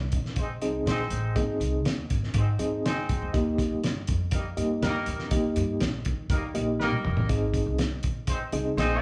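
A straight 4/4 groove at 121 BPM drives this joyful, danceable slice of uptempo 1960s-style soul in Ab major, built on a cloth-damped drum kit with a fat snare, tight kick and gritty, muffled top, alongside a woody, thumpy upright bass on gut strings, all cut from a longer piece. A reedy electric piano with fast tremolo sits up front playing the accompaniment, while a distant, roomy horn section carries a second line in octave doubling with light vibrato. The band plays live in one room under a large studio reverb, moving from Ab to Eb at 3.3 seconds and back to Ab at 7.3 seconds, just after a drum fill at 6.8 seconds.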